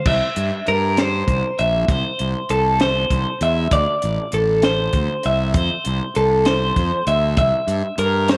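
Math rock and midwest emo in a straight 6/8 set a bright, wistful mood in this short excerpt cut from a longer piece. A twelve-string electric guitar opens at 0.0 seconds with clean, picked arpeggios, its compressed, twangy tone sitting up front and bathed in spring reverb. From 0.1 seconds a fuzz-laden fingered electric bass joins with a round, punchy, overdriven voice, alongside a compact cocktail drum kit that sounds dark and smooth, with a high-tuned snare, a punchy kick, hi-hat and crash cymbal. The harmony moves from C7 through C6, Dsus2 and Fmaj7 before returning to C7. A light small-room reverb wraps the trio, and the instruments are tuned slightly under standard pitch, to A4 = 439 Hz.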